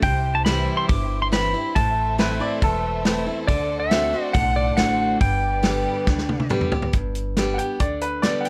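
A straight 4/4 groove at 139 BPM drives this easygoing, heartfelt honky-tonk and classic country clip in G major, with a punchy, up-front acoustic drum kit, a woody, thumpy upright bass and a full-bodied picked dreadnought acoustic guitar beneath a twangy, clean pedal steel melody and lush bowed violin chords, while a brilliant upright piano adds a brief second line before a drum fill at 6.1 s hands off to its closing solo, all captured dry with close, detailed microphones.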